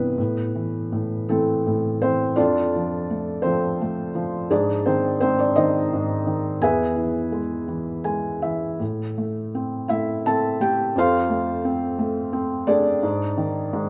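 A felt-muted upright piano carries this short classical excerpt alone, its soft, mellow tone sitting up front with an intimate closeness and audible action noise beneath the notes. The mood is calm and warm, moving in 6/8 with uneven beats and a rubato feel that lets phrases breathe freely. The piano spans from C2 to A5, and a brief fill between 7.7 and 8.8 seconds stands out within the single section. Harmonies drift through A minor, F and A-flat to E before circling back, reaching an Ab5 chord as the fragment closes at 13.9 seconds. Light reverb surrounds the instrument, and the top end is rounded off, giving the recording a hushed, muffled glow.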